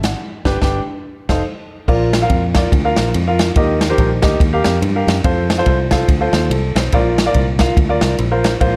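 Reverent and hopeful, this short excerpt of uptempo gospel swings at 143 BPM in 4/4, opening with a band accent from 0.2 to 1.9 seconds over G and F7 before settling into a Bb, Eb, F progression. An intimate grand piano with audible action noise sits up front in the accompaniment, while a bright, foam-muted fingered electric bass holds the low end. A polished, airy big-band drum kit with dark cymbals, a medium-tuned snare and a punchy kick drives the swing under light reverb.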